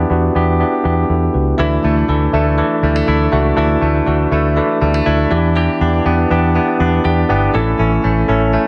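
Pop at 121 BPM with a nostalgic, uplifting mood, this short cut from a longer piece pairs an up-front, clean tine electric piano, which plays a brief fill at 4.8 seconds, with a round, punchy, foam-muted vintage fingered bass over an Em7 chord that moves to A at 7.5 seconds, while a bright, twangy, direct-recorded clean electric guitar riff enters at 1.6 seconds, set lower in the mix with subtle chorus and tape echo, all in a light reverb.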